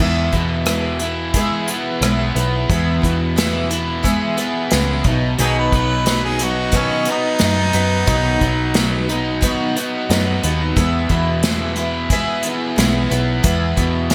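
Folk rock with a heartland rock streak, this short excerpt moves at 89 BPM in a straight 4/4 and carries a warm, nostalgic mood in E major, shifting from E to B and back to E. A bright, shimmering twelve-string acoustic guitar sits up front with fresh, octave-doubled strings and a lush chorus, while a double-tracked, overdriven electric guitar plays a compressed riff bathed in spring reverb. The picked electric bass is foam-muted and direct, placed close in the mix, and an acoustic drum kit played with bundle sticks brings an airy, polished small-room sound with a tight kick, medium-tuned snare, rim clicks, hi-hat and crash under gated reverb. A smooth-topped harmonica enters at 5.4 seconds with a pop-style second line and drops out at 9.1 seconds. Light reverb and small-room ambience frame a bright, 1980s-style digital production.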